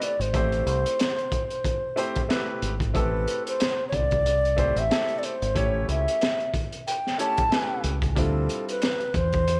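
Smoky and mellow, this short cut from a longer jazz-hop piece rides a swung 4/4 groove. A breathy, reedy bansuri carries the melody from the start, its bright, crisp-attacked straight tone trailed by tape echo. Beneath it, a vintage-sounding concert grand piano lays down smooth chords with deep bass, moving from Am9 through Am7 and A7 to a closing Dm11, and drops out at 9.0 seconds. The breakbeat kit sits up front, saturated and gritty with a rolled-off top, pairing a punchy kick with a high-tuned snare and hi-hat. A round, dark dub bass, fingered and played direct and amped, enters at 0.2 seconds and sits up front as well, while light reverb and a small room ambience give the whole a close, intimate feel.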